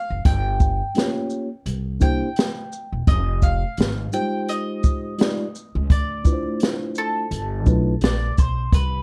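A relaxed 85 BPM groove in 4/4 sets the pace, its 16th notes swung for a laid-back jazz-hop feel in this hip hop cut from a longer piece. The open jazz drum kit sits up front with hi-hat, shaker, a high-tuned snare and a boomy kick, sounding like an acoustic kit in a studio room. Beneath it, a pizzicato upright bass with gut strings gives a woody, thumpy low end, also placed close in the mix. A mellow, clean tine electric piano comps from 0.9 to 7.9 seconds through jazzy changes such as Gm7b5, C7, Fm9, Dm9 and G13. Over the top, a picked bowl-back mandolin carries the melody, its double strings adding warmth at a softer level than the rest. The sound is dry and intimate, and the mood feels both warm and cool at once.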